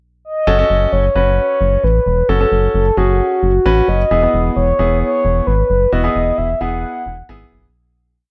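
A mellow, horn-like synth lead with chorus and vibrato opens on a pickup at 0.2 s and carries a motif-based melody through this nocturnal, driving pop piece at 132 BPM in F# dorian; it is joined at 0.5 s by a clear baby grand piano playing syncopated triad chords and a rubbery, nasal square bass pulsing in eighth notes over F#m and Eadd9 chords, all in light studio reverb with a faint mains hum, before the piece fades out from 5.9 s.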